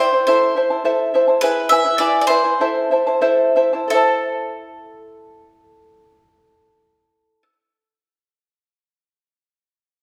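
A bright, picked bowl-back mandolin carries the melody from the opening moment, its doubled strings up front, over a shimmering, fingerpicked charango whose octave-doubled courses fill in the accompaniment. This short Andean folk excerpt in A minor moves in a straight 2/4 at around 84 to 106 BPM, earthy and festive, and slows between 1.4 and 3.9 seconds as the harmony passes from Am to E and back to Am. Both instruments ring in a reverberant recital hall, and a second section arrives at 3.9 seconds before the piece is cut off.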